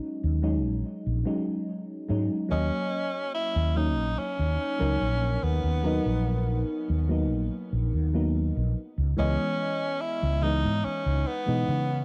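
A straight 4/4 pulse carries this hazy, nostalgic vaporwave excerpt, where a soft, warbling FM electric piano with subtle chorus opens at 0.0 s, a dark, round fretless bass with tube saturation and analog chorus joins at 0.2 s, and a clear tenor saxophone with vibrato and tape echo takes the solo melody from 2.5 s, all three sitting up front in a dry cassette-tape sound.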